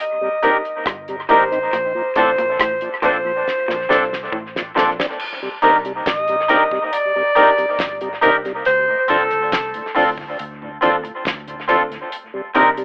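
Lovers rock reggae with a longing, smooth mood, cut from a longer piece, where an up-front alto saxophone with jazzy vibrato sings the melody through dub echo until 9.9 seconds over a mellow, slowly rotating tonewheel organ, a clear concert grand piano, twangy clean guitar stabs, a damped 70s drum kit with a fat snare and a drum fill from 3.5 to 5.2 seconds, a slightly broken-up lo-fi guitar riff, and a round, foam-muted bass, all heard through a rough home-demo mix with a telephone-like tone in a small room.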